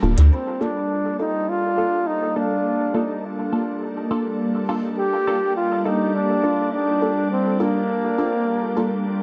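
Ambient music at 103 BPM in 4/4 with a straight feel, this excerpt sits in G minor and carries a deep, hazy mood over a single Gm7 harmony. A soft additive organ-like pad holds sustained chords from the very start, its pure, sine-based tone detuned and full-bodied, thickened by ensemble chorus and its own built-in reverb and placed up front with a bright, calm presence. Underneath, a filtered dub chord stab sits in the background, its muted, mellow sawtooth and square-wave character shaped by a plucky filter, a phaser, subtle chorus and dub echo. At 0.3 seconds a trombone takes the solo melody in a classical style, its tone warm and vibrato-laden, sent through dub echo and kept prominent in the mix. The whole is framed by a moderate plate reverb and digital ambience, giving an echo-heavy sound that runs to 9.2 seconds.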